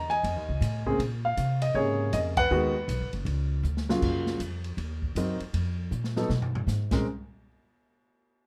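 A close, intimate grand piano carries the melody from the opening moment, joined at once by a woody, thumpy upright bass plucked on steel strings, both sitting up front in a light reverb. A moment later an acoustic drum kit enters from a small room, its dark cymbals, medium-tuned snare and boomy kick sitting further back than the piano and bass. The mood is moody and swinging, with a lilting eighth-note swing carrying harmony that moves from an altered F7 through Bbm9, with a brief band accent at 2.3 seconds, on to Abm7. A drum fill leads into a new passage at 4.0 seconds, where the chords turn to Gbmaj7, Cm7b5 and Fsus4, and another fill pushes toward the return of Bbm9. The piano's natural tone carries audible action noise, which adds to the close-up, after-hours character of this short cut from a longer piece.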